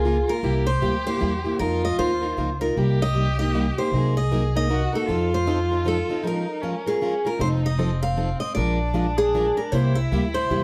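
From the opening moment, a bright, picked steel-string acoustic guitar carries the melody up front, joined by a boxy plugged-in acoustic guitar picking an accompaniment with audible finger squeak, a woody, thumpy gut-string upright bass played pizzicato close at hand, and a distant, expressive bowed violin weaving a second line with vibrato and portamento. Together they form a swinging, virtuosic jazz manouche piece at 155 BPM in 3/4 that sounds from further back in a wet studio room, pausing for a break at 6.2 seconds before a new section arrives at 7.4 seconds in this fragment of a longer piece.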